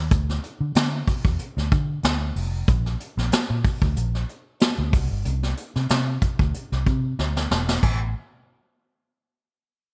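A light 16th-note swing drives this bittersweet, urban excerpt of polished 1980s jazz-funk pop, where a vintage brush drum kit with a punchy kick, medium-tuned snare, dark cymbals and gated reverb sits up front beside a round, foam-muted fingered electric bass, all in bright digital production with little room sound, before a drum fill at 7.2 seconds leads into a new section at 7.8 seconds.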